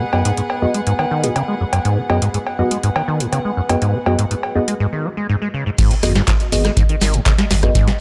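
A squelchy, resonant acid bass riff with a filter sweep and analog chorus sits up front in this gritty, raw acid house excerpt, over a booming analog drum machine with crisp snare, metallic hats, cowbell, handclaps and rim clicks, while a warbly, lo-fi pad with phaser and sidechain pumping hums in the background. Deep, nasal chord stabs with dub echo carry a filter sweep through the opening 5.8 seconds, and a gut-string studio string section with light vibrato adds texture until 4.8 seconds, ahead of a brief break. The drop lands at 5.8 seconds with an up-front electronic kick, a very quiet vintage kit and a grainy shekere, joined at 6.0 seconds by a round, dark sine-and-triangle bass that pumps with the sidechain.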